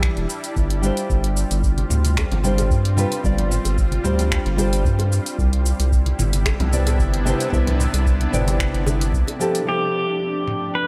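A round, dark analog bass sits up front in this relaxed, blissful sunset chillout excerpt at 112 BPM, with a gentle 16th-note swing and chords moving from Em7 through G7sus4 and Cmaj9 to F69. Beneath it, a thumb-plucked classical nylon-string guitar with low-pass filter and delay shares the space with a shimmering, ethereal, detuned ambient pad, while a deep, dry electronic kick in the background and an overdriven smooth R&B kit of finger snaps, hi-hat, shaker and toms keep time, joined at 1.8 seconds by very quiet, bright congas and bongos. At 9.7 seconds a clean, compressed pedal steel guitar with slide and delay steps forward to carry the melody in a light reverb.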